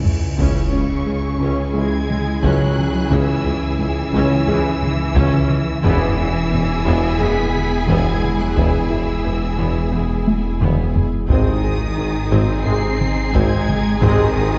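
A thick, beating detuned saw bass with a menacing, saturated edge anchors this tense, futuristic hybrid orchestral and electronic film cue in C# minor, moving at 88 BPM in a straight 4/4. It is doubled low by a bright bowed double bass section, a smooth-topped tuba and a rich cello section. Heavy-stick taiko ensemble drums drive the cue from the back of the mix, with fills at the opening and again at 10.3 seconds, while a huge cymbal swell breaks into an impact at the start. High above, a lush violin section carries an expressive, vibrato-laden melody over a second violin line, framed by a clear viola section, warm French horns and very quiet trombones holding sustained chords. A warbling, lo-fi tape-like pad with chorus and its own reverb adds a dark, nostalgic haze, and a round, tine-like thumb-piano synth pluck traces very quiet arpeggios. The harmony shifts from C#m to E at 5.8 seconds and lands on G# at 11.3 seconds, all set in a wet scoring-stage reverb heard from further back in the room with a dulled top end.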